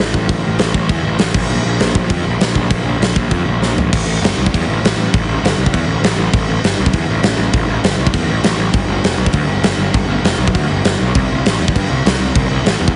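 Heavily compressed, dry and radio-like, this upbeat, energetic punk rock excerpt races along at 199 BPM in a straight 4/4 as a growly, overdriven fuzz bass, picked and punchy up front, drives alongside a big acoustic rock kit of crash, punchy kick, medium-tuned snare and toms ringing in a bright stone room, which throws in a fill at 3.6 seconds to launch the next section at 3.9 seconds.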